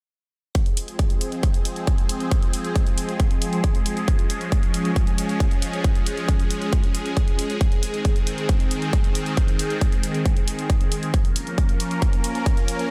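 A straight pulse at 136 BPM in 4/4 drives this uplifting trance excerpt in F minor, its mood bittersweet and emotional. The electronic kick drum is punchy, layered and up front, carrying a touch of studio reverb, while a layered electronic hi-hat enters at 0.5 seconds, sitting low in the mix with sidechain pumping and its own studio reverb. From 0.6 seconds a lush supersaw pad holds sustained chords between Eb3 and Bb4, its detuned unison sawtooth voices bright and forward, with a slow attack, a moving notch from the phaser, and sidechain pumping that makes it breathe. The harmony moves through Fm, Db, Ab and Bbm, giving the passage its yearning lift. The overall sound is dry and close, cut from a longer piece.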